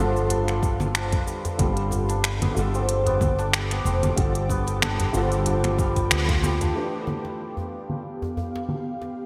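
A lightly swung 16th-note groove at 93 BPM drives this earthy, warm organic downtempo fragment, where a crisp, tape-tinged electronic kit of congas, finger snaps, hi-hat and shaker sits up front beside a deep electronic kick and a very quiet, cracking djembe with metal rattles, while a shimmering hammered santur spins arpeggios, a soft felt-muted upright piano with audible action noise plays accompaniment, an airy detuned pad holds chords in the background, and a round, dark fretless bass anchors the F69 harmony until the kick drops out at 6.4 s and the bass at 6.7 s, just before the drums and pad are filter-swept over a G7 from 6.8 s, the mix bathed in a lush hall reverb with a bright 1980s-style digital sheen.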